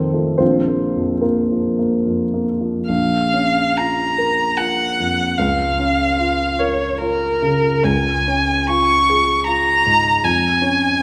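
Elegiac and solemn, this romantic classical fragment for violin and baby grand piano moves in a slow, rubato 3/4 at 73 BPM in B-flat minor, its harmony drifting from B-flat minor toward D-flat major. The intimate piano opens alone as accompaniment, its action noise audible, before the violin takes up the melody at 2.9 s with a smooth, even, warm vibrato. Both instruments sit up front in a wet recital-hall reverb that lends the duo a natural, spacious glow.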